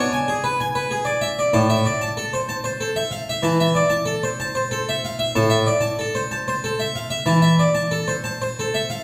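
A rubato 12/8 lilt at 63 BPM in dotted quarters carries this radiant, serene fragment of a baroque-style suite movement in A minor, where a solo Flemish-style harpsichord, full and plucked on two sets of strings and placed up front, ranges from A2 to A5 over a G#dim chord resolving to Am at 1.5 seconds, all bathed in the wet reverb of a recital hall heard from further back in the room.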